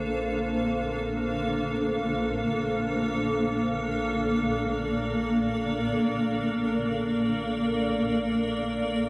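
A blurred, cloudy granular pad sits up front with bright, evolving sustained chords, filling this peaceful, weightless ambient passage taken from a longer piece. Beneath it, a nasal, organ-like drone thickened by ensemble chorus holds steady, while a bowed double bass section with lush vibrato fades in from 0.0 s through 9.1 s. The whole blend hangs in a wet concert hall reverb, resting on a single chord for its full 9.1 seconds.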